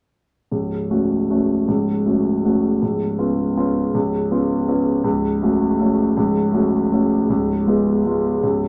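A concert grand piano opens at 0.5 s, playing alone in a classical waltz with a nostalgic, bittersweet mood. The instrument has a warm tone, a deep bass and an up-front presence, and its part stays in the low and middle registers. The triple metre sways with rubato and uneven beats, giving the dance a lingering, wistful lilt. The harmony moves back and forth between a minor chord over its fifth in the bass and a dominant seventh, with the changes falling roughly every two seconds. A moderate studio reverb adds a modest sense of room, and the passage, taken from a longer piece, ends at 8.7 s.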